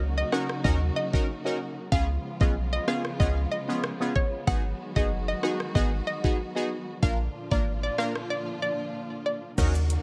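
A straight 4/4 dancehall groove at 94 BPM, with a knocking kick, metallic hats, rim clicks, shaker and crash on an electronic afro-pop kit heard in a large room, drives this tough, hypnotic passage cut from a longer piece, while a deep, boomy 808-style bass sits up front. Lush bowed studio strings hold sidechain-pumped chords through Ebm7, Db7, Abm7 and Bb, as a punchy, nasal synth brass stab with chorus and phaser and a hollow, bouncy square-wave pluck melody with chorus and digital delay fill the upper range. A break arrives at 8.3 seconds, and a very quiet, ringing egg shaker slips in at 9.6 seconds.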